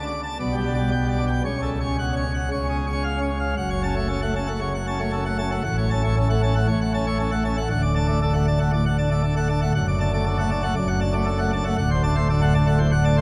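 A full pipe organ plenum rings out alone in this majestic, dramatic classical toccata, its mixtures giving a brilliant, baroque-voiced sound with audible chiff at the start of notes. The organ sits up front yet blooms into a cathedral reverb whose long decay of 5.8 seconds lets each chord hang in the air. Its range stretches from deep pedal tones at D1 up to A5, filling the space from floor to vault. The harmony moves from G over B through F-sharp minor over C-sharp to C-sharp, then settles into F-sharp minor at 3.6 seconds as a new section begins. From there the chords shift toward D, D over F-sharp and finally D7, building a grand sense of tension before this fragment of a longer piece is cut off at 13.2 seconds.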